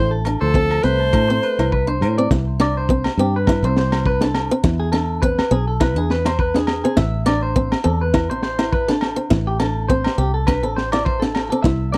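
Warm and danceable, this short highlife guitar band cut at 103 BPM with a swung 16th feel opens with an edgy, forceful alto saxophone melody over a distant, breathy trombone line that both stop at 1.7 seconds, leaving a boxy picked acoustic archtop guitar, twangy clean electric guitar arpeggios with tape echo, a round fingered electric bass, ringing agogo bells and a gritty, saturated breakbeat drum kit with a high-tuned snare to carry the dry, close 1970s-style groove through chords from Amadd11 to C, E and Am.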